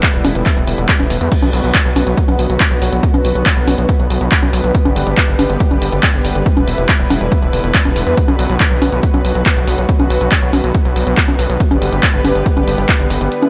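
A lush, detuned unison pad sustains chorused chords over an overdriven analog kick and an up-front drum machine of congas, handclaps, hi-hat and crash, both ringing with the sound of a large room, in this emotional, soaring uplifting trance excerpt. From 0.1 seconds a gritty, aggressive sawtooth bass with oscillator sync and tube saturation joins, its plucky fast attack and the pad's nasal brightness both pumping against the kick. The harmony moves through Em7, Bm and G twice under light reverb, and the kick drops out just before the close.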